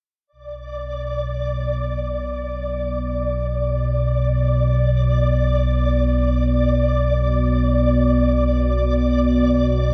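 A flickering, grainy texture fades in first at 0.5 s, a high sustained tone on D5 built from detuned triangle waves and granular fragments, bathed in its own reverb and a shimmer reverb. At 0.7 s an analog drone swells in slowly beneath it, holding between B1 and B2 with a nasal, mellow blend of sawtooth and pulse waves, its pulse-width modulation and chorus keeping the sound gently evolving. This short excerpt of dark ambient drone floats in free time over a single B minor chord, tuned to A4 = 439 Hz, and its mood is desolate and unsettling. Both parts sit up front, with slow attacks, long releases and sustained tones that stretch to the end at 9.9 s. A moderate spring reverb surrounds the pair with a lingering tail.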